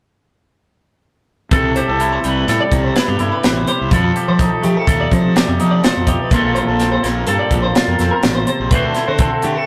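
Wistful and playful, this short math rock and midwest emo fragment moves at 125 BPM in 5/4 with a straight feel, cut from a longer piece. A twangy, clean electric guitar sits up front with accompaniment while a bright twelve-string electric guitar picks arpeggios through spring reverb, over a fuzzy, overdriven fingered bass and a crisp fusion drum kit with a high-tuned snare and punchy kick. The chords move from C6 to F9, Bbmaj7sus2 and D7, and the rough rehearsal-room sound carries tube saturation and a moderate studio reverb.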